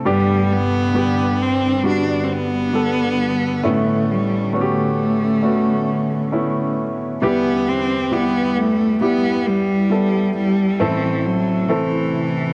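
A home cassette recording with light reverb and the ambience of a small room frames this emotional, melancholic pop ballad, a passage cut from a longer piece in a straight 4/4. A polished, present baby grand piano sits up front as accompaniment, reaching from deep bass notes into the middle register across the full 12.5 seconds. From 0.1 seconds, a single bowed cello carries the melody up front, clear and focused, with vibrato colouring each note. Behind them, a mellow, ethereal pad of detuned sawtooth and triangle tones in unison, with a sub octave, holds sustained chords in the background, its slow attack, long release, ensemble chorus and built-in reverb keeping it airy. The harmony moves from G to Aadd9, then Em and Am.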